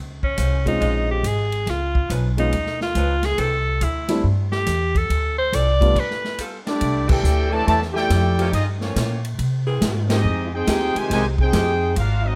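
A woody, pizzicato upright bass opens this energetic big band swing excerpt at 140 BPM, joined almost at once by a natural-sounding studio drum kit with a punchy kick, a tight saxophone section holding sustained chords, and a warm grand piano accompanying a bright, forceful tenor saxophone solo with vintage vibrato up front. After a brief stop, a brilliant trumpet section takes the melody at 6.7 seconds over a soft-attack trombone section playing a second line, with band accents at 7.0 and 10.0 seconds. The sound is close and detailed, with light reverb.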